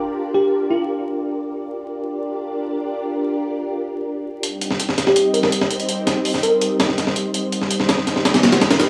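A compressed, pitched-up breakbeat kit with a gritty, high-tuned snare and hi-hat comes in up front at 4.4 seconds, giving this dark, raw drum and bass and jungle fragment its tape-warm drive. Alongside it, a silky vintage string machine, also up front, holds slow-attack chords from the start, moving from Gm7 to Cm/G under an ensemble chorus with a moving notch. A bell-like FM electric piano adds sparkling, mellow phrases with chorus and dub echo, all set in a dry hardware sound with vinyl crackle and small room ambience.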